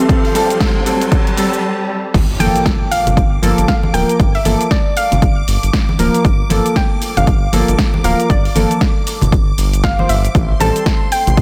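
Deep house in G dorian at 117 BPM with a swung 16th feel, this moody clip opens on an F chord as a riser builds, stops short at 1.6 seconds, then drops at 2.1 seconds with an impact into a deep Gm9 groove that moves to Am7. An overdriven, up-front electronic kick and a gritty analog drum machine with snare, hi-hat, shaker and crash drive the beat, while a round, dark sidechain-pumped bass and mellow chord stabs with chorus, filter sweep and analog delay fill the low and middle. A soft pluck melody with tape echo floats above, shimmering vintage string-machine violins sit in the background, and small-room congas join at 2.4 seconds, all in an echo-chamber ambience with a dense, heavily limited master.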